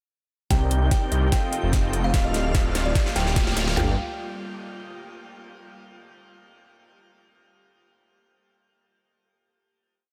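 A buzzing, woody kalimba riff with sidechain pumping and delay starts this bittersweet, emotional half-time future bass build at 0.5 seconds, together with a dense, compressed supersaw riff under a filter sweep, a thick, saturated detuned saw bass with long gliding notes up front, a very quiet fingerpicked concert harp and a dreamy lead tracing arpeggios, a knocking trap kit playing a fill, and a big-room dance kit with metallic hats, hat rolls and a huge snare; an ethereal pad enters at 1.6 seconds, a riser sits in the background, and the piece resolves onto a final Gm9 chord at 3.8 seconds in light reverb.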